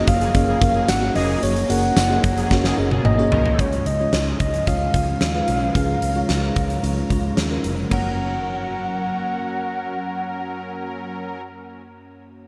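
A soft, round synth lead with chorus sings over a lush, dreamy FM electric piano and a very quiet organ-like string ensemble from the opening, joined at once by a dark, foam-muted fingered bass, a huge arena drum kit with a fat snare and punchy kick, and bold, detuned analog synth brass stabs with chorus and delay, in this romantic, glossy 1980s-style pop excerpt at 111 BPM in F# major, where a drum and electric piano fill at 2.5 seconds leads on, the drums drop out at 8.0 seconds, and the whole is bathed in a lush hall reverb and bright digital production.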